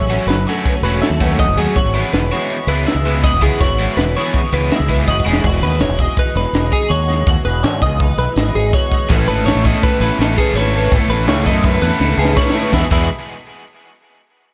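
An echo-heavy studio mix with a softened top end frames this bright, playful math rock and midwest emo clip in 5/4, cut from a longer piece. Two clean, compressed twelve-string electric guitars share the ground: one mellow and washed in ensemble chorus and tape echo as it plays the chords, the other twangy as it picks arpeggios above. Beneath them, an up-front, growling fingered bass with overdrive and a crisp fusion kit with bright cymbals, a punchy kick, a high-tuned snare and a pumping small-room sound drive the piece, with two drum fills along the way. A double-tracked, overdriven guitar riff with tape echo drops out at 5.4 seconds and returns at 9.1 seconds, as the harmony moves toward lush major-ninth chords.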